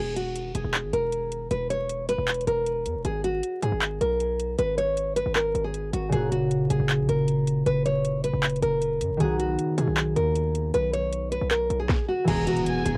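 Melancholic and hard-hitting, this half-time trap instrumental at 156 BPM in G# minor sets a fingerpicked, full-bodied nylon-string guitar melody up front over a mellow, ringing concert harp that returns at 6.1 seconds, a punchy, heavy 808 bass and a trap kit with a knocking kick, sharp snare and metallic hats, all over a G#m, F# and B progression. At 12.3 seconds the chord moves to E as a reedy, gut-toned violin section with tape echo and plate reverb, a very quiet dark ambient pad and a background impact arrive together. The whole excerpt carries the feel of a home cassette recording with vinyl crackle and light reverb, the guitar, harp, drums and violins all colored by tape.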